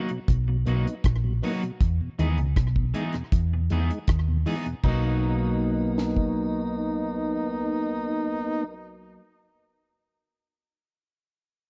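A dry, close 1970s-style studio sound frames this short, laid-back roots reggae excerpt, with a deep drum kit, its snare tuned high and its top rolled off, sitting up front beside a round, punchy hollow-body electric bass. A twangy, slightly broken-up electric guitar with analog chorus and tape echo shares the accompaniment with a mellow tonewheel organ turning through a slow rotary speaker with key click and slapback echo, over chords moving from Bmaj7 to Emaj7. At 4.8 seconds a brilliant, close-miked trombone with vibrato and tape echo enters on a single pitch as a second line, and the drums drop out at 6.3 seconds.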